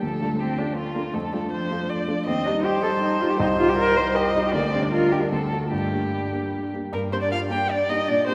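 Restless and urgent, this short fragment of a quick classical-period piano trio movement in triple time moves with a rubato feel. A veiled, con sordino violin sings the melody up front with vibrato, a muted cello carries a soft-edged second line with light vibrato, and a dark baby grand piano supplies mellow, intimate accompaniment with audible action noise and short sustain. All three play throughout in a church or concert hall, bathed in a wet reverb, and the opening idea starts again at 6.9 seconds.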